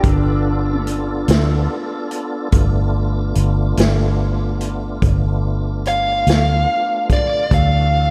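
A lush hall reverb gives this short cut from a longer piece a big arena sound. It is a soulful, laid-back slow blues in 12/8 at 48 BPM, set in G mixolydian, resting on a G7 chord before moving to D at 7.5 seconds. A vintage drum kit sits up front with a punchy kick, a medium-tuned snare and hi-hat, its top rolled off for a natural studio-room tone. A foam-muted, round fingered electric bass holds the low end beside it, while a tonewheel organ spreads full, clean sustained chords through a slow rotary speaker with chorus vibrato. A slightly broken-up guitar through a small old amp adds a lo-fi second line with slapback echo only for the first 0.8 seconds. At 5.9 seconds a smooth, dark overdriven lead guitar enters up front with a picked melody, also carrying slapback echo.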